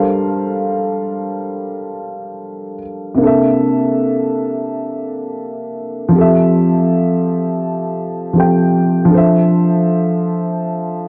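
Dark, plate-reverbed production frames this cosy, mellow hip hop excerpt in F major and free time, where a woody, boxy upright piano plays alone and up front for all 11.1 seconds, its long-sustained chords of Gm11, C13, Fmaj9 and Dm9/F softened by cassette tape colour and a low-pass filter.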